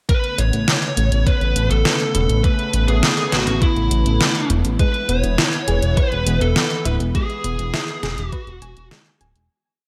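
Bright 1980s-style digital production with light reverb and digital ambience frames this short, nostalgic and dreamy synthwave piece in A major at 102 BPM, moving from Aadd9 to E before a fade-out starting at 6.4 seconds. An overdriven, knocking machine kick and an 80s pop drum kit with closed hi-hat and a deep, gated-reverb snare backbeat sit up front beside a glossy, chorused synth bass galloping in sixteenths with sidechain pumping, while a silky analog string pad holds sustained chords with ensemble chorus and vibrato. A dark, fuzz-distorted lead guitar with delay states a motif-based melody in sentence-like phrases, and from 4.8 seconds a soft, round pluck adds an eight-step arpeggiated sequence with chorus and delay in the background.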